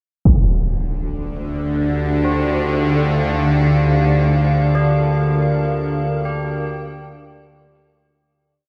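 In a slow, straight 4/4 pulse, this dark ambient drone piece unfolds as a complete, cavernous and unsettling whole. A huge, bright impact hits up front at 0.3 s through a low-pass filter, as a deep, moody analog pad fades in on sustained, slowly shifting chords from Dm7 to Bb69/D, its detuned square, sawtooth and triangle waves, sub octave and wave-folding softened by chorus. Beneath it, a tense, string-like bowed drone of detuned unison sawtooth with a noise layer sits up front with vibrato, phaser and its own reverb, while an eerie, inharmonic FM drone holds a high note in the background. From 2.2 s, tubular bells play solemn, metallic arpeggios struck with a rawhide hammer through tape echo, in three slow loops of unequal length drifting against each other. The mix sits in a huge ambient reverb and fades out from 4.3 s.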